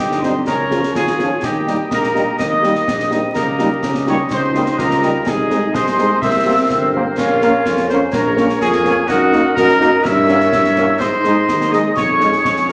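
Set in a straight, brisk 2/4 march step, this proud, rousing wind band excerpt puts a distant, roomy cornet up front on the melody, with airy, tongued flutes, a smooth-topped woodwind section and a soft-attacked euphonium carrying second lines, a dark, very quiet French horn section adding accompaniment, vibrato-laden trombones holding chords in the background, a warm tuba on the bass, and concert snare, bass drum and dark clash cymbals entering at 0.1 seconds, all bathed in a large studio reverb with vinyl crackle.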